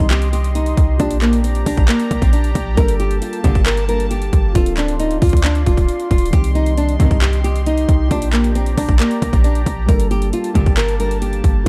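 Hip hop trap in a half-time feel, eerie and hard-hitting, where a fingerpicked nylon-string guitar with audible finger squeak carries the melody over a dark, boxy concert grand piano in the background, a bright, detuned sawtooth pad with chorus sustaining the chords, brief lush bowed string stabs at 0.0, 3.4, 7.0 and 10.6 seconds, a deep, boomy, clean 808-style bass up front, and an overdriven trap kit of hard-clipped kick, metallic hi-hats and handclaps, all set in a dark studio reverb.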